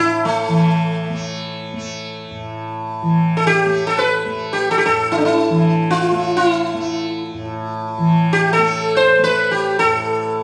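A plucked sitar with buzzing, sympathetic-string shimmer carries an introspective, solemn Hindustani classical melody in free time over a bright, softly plucked tanpura drone, both close and present in this 10.4-second fragment of a longer piece, framed by light studio reverb and vinyl crackle.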